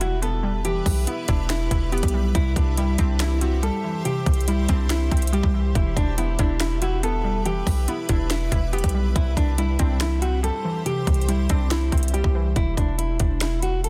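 A menacing, hard-hitting trap excerpt in half-time at 141 BPM opens all at once with a dark, fingerpicked nylon-string guitar melody with audible finger squeak, a glassy, chorused wavetable pluck, a faint granular pad drifting in a blurred cloud, a punchy, heavy 808 bass and an up-front trap kit of hard-clipped kick, sharp snare, metallic hats and finger snaps, all cycling between E minor and C until the pad ends at 12.5 seconds and the pluck drops out at 12.6, leaving guitar, 808 and drums for a brief chordless tag in a dry, dense, heavily limited mix.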